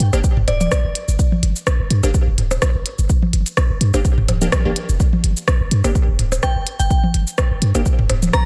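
Quirky and clinical, this minimal techno cut in G minor moves at 126 BPM with a light 16th-note swing, built on an up-front deep electronic kick and a punchy sine sub bass with a pitch-drop attack, tube saturation and sidechain pumping, while a clicky kit of hi-hat, rim click and shaker and layered electronic percussion blips and toms with tape echo fill out the groove, crisp detuned wave-folded wavetable chord stabs with a filter pluck add tape-echoed accents, and a crystalline FM synth bell with chorus and tape echo flickers briefly at 0.5 seconds before returning at 6.4 seconds, all in a dry, close sound.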